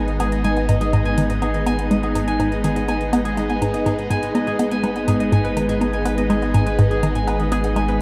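Ambient, sequencer-driven space music in G# minor, this eight-second excerpt cut from a longer piece moves at 123 BPM in a straight 4/4 and feels expansive and cosmic, resting on a single G# minor chord throughout. A swirling, vintage string machine holds sustained chords up front, its sawtooth tone bright and warbling under ensemble chorus, phaser and shimmer reverb. Beneath it, a hollow, bouncy square-wave pluck repeats a detuned riff with a fast attack and short decay, treated with chorus, phaser and delay, and stops at 7.8 seconds. A fingerpicked concert harp rings out arpeggios between G#4 and G#5 through delay and shimmer reverb, while a round, deep analog bass sustains a dark low G#. Faint electronic percussion enters at 0.1 seconds, metallic hi-hats and woodblock with a tape-warm edge and delay, and the whole piece sits in a vast, echoing cathedral space with a long 5.1-second reverb tail.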